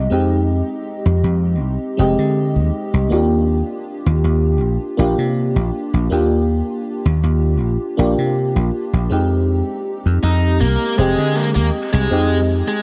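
A straight, unhurried 4/4 pulse anchors this nostalgic, woozy vaporwave excerpt, carried from the opening by a dry, thumbed slap bass that sounds punchy, foam-muted and up front. Beside it, an FM electric piano layered with a soft pad supplies lush, dreamy chords with a fast attack and decaying tail, shimmering through analog chorus and analog delay. The harmony moves from Fm7 to Ebmaj9 and settles back on Fm7 near the close. At 10.2 seconds a bluesy, overdriven lead guitar enters with a dark, distorted, picked tone, its phrases trailing through tape echo. The whole excerpt sits in light reverb and carries the worn, warbling pitch drift of old cassette tape, giving it a faded, half-remembered glow.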